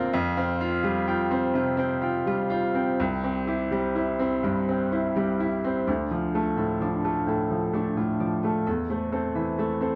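A bright, brilliant baby grand piano sits up front from the first moment, laying down a tender, hopeful accompaniment in slow, rubato 6/8 at 42 BPM, while a ringing, fingerpicked concert harp spins arpeggios above it with a slapback echo. This neoclassical piece moves from Fsus2 to C, then shifts at 5.9 seconds into a new passage on Dm and Am/E. The moderate studio reverb and dark, warm production give the short excerpt a soft glow around the open piano tone.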